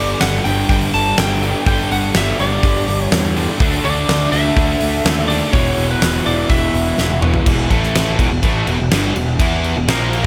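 A huge arena drum kit sits up front in this menacing, heavy hard rock excerpt, with a fat snare, punchy kick and bright cymbals ringing in a hall-like space, and a drum fill at 7.0 seconds pushes into a new section at 7.5 seconds. Beneath it, a fuzz-laden picked electric bass growls with punchy, overdriven grit, while three guitars stack up the riff: a distorted, compressed guitar in the background and two very quiet overdriven ones, one of them double-tracked. A dark, slightly broken-up lead guitar carries the melody until 7.2 seconds. A smooth, very quiet tonewheel organ holds sustained chords through a slow rotary speaker with chorus vibrato. The harmony moves through G5, D5 and E5 power chords before shifting between E minor and A5, and light reverb gives the whole mix a touch of air.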